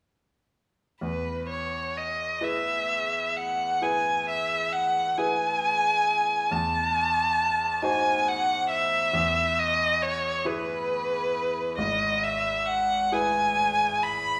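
A moderate recital-hall reverb, with a decay of about 1.4 seconds, surrounds this recording made in a church or concert hall. It is a tender, romantic classical duo for violin and grand piano in E major, moving slowly at 42-46 BPM in dotted quarters through a flexible, rubato 12/8. The violin carries the melody up front, its rich, expressive bowed tone shaped by vibrato and portamento as it sings between B4 and B5. Beneath it, the grand piano gives a clear, smooth accompaniment with a vintage quality and long sustain, reaching from G#1 to B#4 and sitting well below the violin in level. Both instruments play together from 1.0 to 14.4 seconds, and the harmony rests on E, passes through a diminished chord over an E bass, and returns home in this warm fragment cut from a longer piece.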